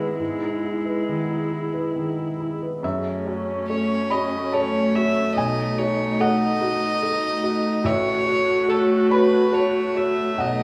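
Wet recital-hall reverb surrounds this melancholic, longing neoclassical piano-and-strings excerpt, moving at a rubato 71 BPM in 3/4 in F# dorian, where a muted, intimate upright piano with audible action noise, a dark, woody viola with vibrato set at a distance, a pure, soft-attack sul tasto cello playing a second line, and a warbling, lo-fi tape-like pad with chorus in the background support a rich, floating violin melody that enters at 3.7 seconds.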